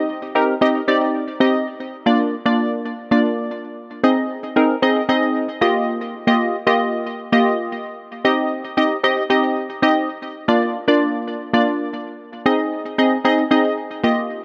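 A light reverb surrounds this short pop fragment, cut from a longer piece, with its lone wavetable chord stab placed up front. The stab plays solo for the full 14.4 seconds at a straight 114 BPM in 4/4, giving the passage a confident, driving mood. Its tone is digital and crisp, with a detuned unison thickening each chord and a filter pluck that shapes a fast attack into a mellow decay, while a tape echo trails behind it. The part spans Bb3 to Eb5 and moves through Cm, Bb and Ab/C to Ebadd9 before returning to Cm, Bb and Ab/C. The whole fragment stays within a single section, so the full-bodied synth carries the harmony alone from start to finish.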